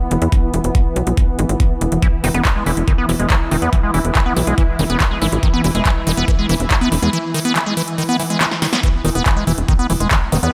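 Psychedelic trance at 141 BPM in E major with a psychedelic, alien mood: a swarming, detuned granular drone holds tense sustained chords with built-in reverb and sidechain pumping, a tight sawtooth sequencer bass with ring-modulated filter plucks drives up front alongside a knocking electronic kick and a layered drum kit of handclaps, metallic hats and punchy snare, a squelchy, resonant acid bass riff with phaser and dub echo enters at 2.0 s, a drum fill arrives at 8.4 s, and a saturated formant-sweep wobble bass with chorus and digital delay slips in at 10.3 s, all set in light reverb and digital ambience with a faint mains hum, in this excerpt from a longer piece.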